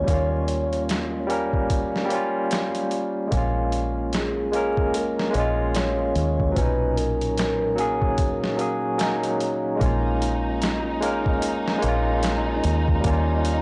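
A dark, cinematic trip hop excerpt at 74 BPM in Bb phrygian, with swung sixteenths, opens with a pure, breathy sine lead gliding with portamento in the background through chorus and tape echo. It sits over a bright, barky tine electric piano with tremolo, low-pass filtering and tape echo, a round, foam-muted dub bass, and a compressed, pitched-down boom bap sampler kit with a thumpy kick. The lead stops at 8.6 seconds, and at 9.8 seconds a lush, bowed symphonic string section enters with sustained chords carrying vintage 12-bit grit, all within a dry hardware sound marked by transformer saturation and vinyl crackle.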